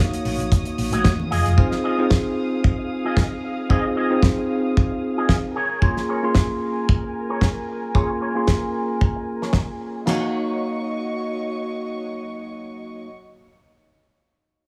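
This groovy, cosmic nu-disco clip at 113 BPM in Eb dorian opens with a bell-like tine electric piano, sul tasto chamber strings with light vibrato, and a round, hollow-body fingered bass that drops out at 1.6 s. The keys and strings pump with sidechain and carry filter sweeps over Ebm7, Fm7 and Bbm7 chords, while a twangy, envelope-filtered guitar riff with chorus and dub echo joins almost at once. Two dry, up-front 70s drum kits with fat snares bring hi-hat, kick, snare and china cymbal, very quiet congas sound briefly near the start, and both kits stop by 10.2 s in the close, small-room sound as the harmony returns to Ebm7.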